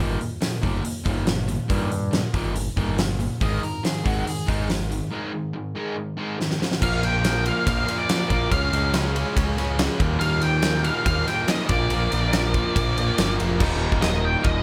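Confident and swaggering, this classic rock excerpt at 141 BPM drives on a bright, scooped distorted guitar and a hollow-bodied overdriven semi-hollow guitar riffing over a growling overdriven bass and a huge, up-front arena drum kit with a fat snare and punchy kick, before a drum fill at 6.4 seconds ushers in a dark octave-fuzz lead melody with digital delay over very quiet, phased string-machine cellos, and a double-tracked overdriven guitar joins the riff at 13.6 seconds, all in light reverb.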